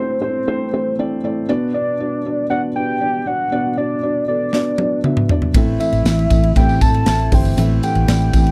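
Piano-driven pop at 118 BPM in a straight 4/4, this short excerpt carries a warm, anthemic mood over chords moving from Am to Bm and back to Am at 5.5 seconds. From the start, a felt-muted upright piano supplies mellow, intimate accompaniment with audible action noise, while a soft octave-layered synth lead sings the melody with a round, triangle-and-sine tone, a sub octave, vibrato and chorus. At 4.5 seconds a polished modern drum kit enters with a fill, its punchy kick and medium-tuned snare sitting up front in a small, airy room. From 5.5 seconds a foam-muted vintage electric bass adds a dark, amped low end, a fingerpicked dreadnought acoustic guitar plays a full-bodied riff in the background, and a jingly, band-limited tambourine shimmers faintly behind it all. The sound is dry and close, in the manner of a 1970s studio recording with little reverb.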